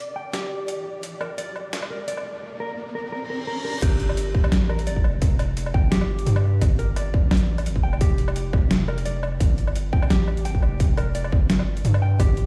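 Cinematic and heavy, this half-time drum and bass cut opens with an electronic riser and reverse cymbal building over a flickering, grainy texture in the background, while a dark, clean electric guitar plays filtered, delayed arpeggios and a gritty, pitched-down, overdriven boom bap sampler-style kit of snare, hi-hat, crash and woodblock enters almost at once. The drop at 3.8 seconds then brings in a deep, up-front 808-style bass and a distorted, tape-warm electronic kick beneath the kit, heard through a big sound system in a stone room with lossy compression artefacts.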